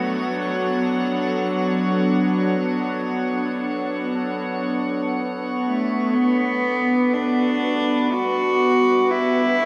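A vast, echoing cathedral reverb surrounds this luminous, weightless ambient excerpt in free time and G lydian, where a rich, nasal cello with light vibrato carries the melody up front, its bowed gut-string tone softened by delay. Alongside it, an evolving, detuned wavetable pad holds sustained chords with chorus, moving from D to Gmaj7 at 6.1 seconds, while a calm organ-like drone with phaser sits in the background and a glassy texture of drifting overtones hovers above. A barky tine electric piano plays very quiet arpeggios until 6.6 seconds.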